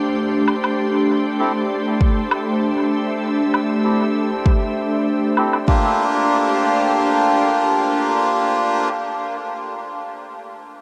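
A dreamy mix soaked in a huge, long-tailed reverb opens this meditative, deep ambient dub fragment at 98 BPM in G dorian, cut from a longer piece, where a soft, pure, organ-like pad with chorus and a gritty 12-bit sampler edge holds sustained chords across G7(no3), Am7 and Gm7. Reedy, breathy melodica stabs enter at 1.4 seconds through a low-pass filter sweep and dub echo. A very quiet, overdriven woodblock ticks in from 0.5 seconds and an up-front, tape-warm electronic kick joins at 2 seconds, both dropping out around 5.7 to 5.8 seconds and leaving pad and melodica to carry the close.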